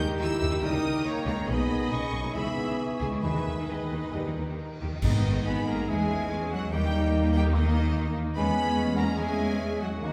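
An intense, vibrato-rich violin section carries the melody of this fast, restless romantic orchestral passage in G# minor at 133-149 BPM, with dark cor anglais, mellow clarinet, hollow flutes and soft second violins weaving lines over rich violas, bassoon, horn chords, ringing harp arpeggios, cellos and up-front double basses, while quiet trombones join briefly, bright cymbals and bass drum surge in at 1.5 s, timpani enter from 3.2 s, and a full-band accent at 5.0 s drives everything into an urgent second section within a roomy reverb.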